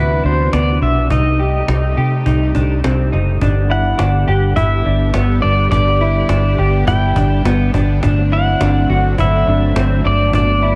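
Floating and blissful, this dream pop excerpt drifts in a straight 4/4, with a clean pedal steel guitar carrying the melody in compressed, fingerpicked slide lines, volume swells and analog delay. Beneath it, a dark hollow-body electric guitar plays lushly chorused, delayed arpeggios, a vintage string machine with viola voices holds warbling sawtooth chords, and a round, foam-muted electric bass sits up front. A woody, band-limited cajon with hard hands and faint snares enters at 0.2 s, and the echo-heavy mix carries light reverb and digital ambience as the chords move from D13 and Cm6 to G at 3.4 s.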